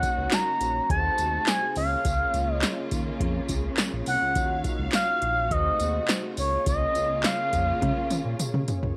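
An overdriven electro analog drum machine with a deep kick, punchy snare, metallic hats, handclaps and toms sets a straight 104 BPM groove for this late-night, funky excerpt of early-eighties boogie funk, under a dark, glossy chorused synth bass, round, detuned mellow synth brass with vibrato, a lush bowed string section, a jingly tambourine and an up-front, nasal synth lead that carries the melody through chorus and tape echo over Ebm7, Ab7b9/Eb and Db6 chords, before a drum fill at 7.8 s.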